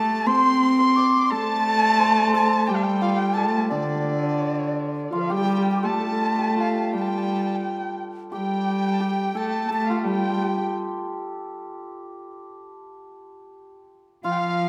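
Tender and wistful, this excerpt from a longer piece for Chinese chamber ensemble moves at 86 BPM in 2/4 with a rubato feel, set in a recital hall whose reverb lends the sound a wet, lingering bloom. A large dizi carries the melody with an airy bamboo voice, a buzzing membrane and a straight, tongued tone, heard close and intimate. Around it, an erhu sings a second line with vibrato, portamento and expressive bowing, while a cello played in period style offers a rich, reedy gut-string tone that sits up front in the mix. A hammered dulcimer adds a bright, shimmering, ringing layer throughout. The passage shifts into a new section at 5.5 seconds, and after 10.8 seconds the dulcimer plays alone until the other instruments return at 14.2 seconds.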